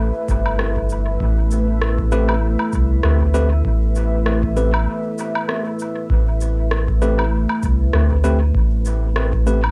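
A swung 98 BPM groove in 4/4 anchors this deep, meditative ambient dub excerpt in A minor, where a round, up-front sub bass and a background analog kick sit beneath a moody, warbling sawtooth pad holding an Am9 chord through chorus and tape, overdriven electronic cabasa, woodblock and rim clicks with dub echo and a large-room sheen, and worn, slightly out-of-tune electric piano stabs entering at 2.1 seconds through a combo amp with cassette grit and echo, all on a lightly reverberant home cassette recording with a break from 4.9 to 6.1 seconds.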